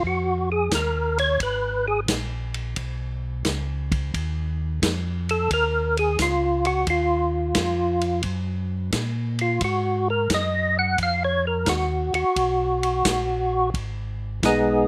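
A swung 88 BPM groove in 4/4 carries this smoky, soulful soul jazz organ trio excerpt in Eb minor, where a fat, percussive tonewheel organ with third-harmonic percussion, key click, chorus vibrato and slow rotary speaker solos up front from Ab3 to Gb5 over a round, dark organ bass line through a slow rotary speaker and a vintage acoustic drum kit with dark cymbals, punchy kick and rolled-off top, all dry as the chords move from Ebm through Abm and Ebm7 to Abm7 at 9.6 seconds.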